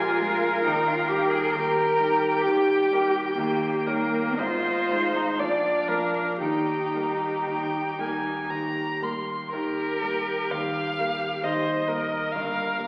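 Classical, a tender slow romantic movement for piano quartet in a flexible triple metre, cut from a longer piece, where a warm violin sings the melody with vibrato and portamento over an up-front, rich and even cello second line that falls silent at 12.1 s, an intense viola with a smooth top and a clear, vintage-toned concert grand with deep bass, all heard through the crackle of a very old 78 rpm record in a reverberant recital hall.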